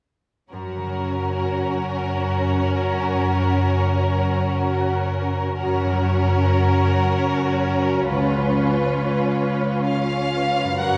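From 0.5 seconds, string sections and concert harp enter together in a lyrical, tender slow romantic movement for symphony orchestra in 3/4 with a rubato feel: the first violins carry a smooth, vibrato melody over a lush, distant second violin line, the violas add expressive accompaniment with portamento, the harp rings out fingerpicked arpeggios, and the cellos hold a light-vibrato bass, heard from further back in a wet scoring-stage reverb as the harmony moves from F# to a C#7 chord at 8.1 seconds in this passage cut from a longer piece.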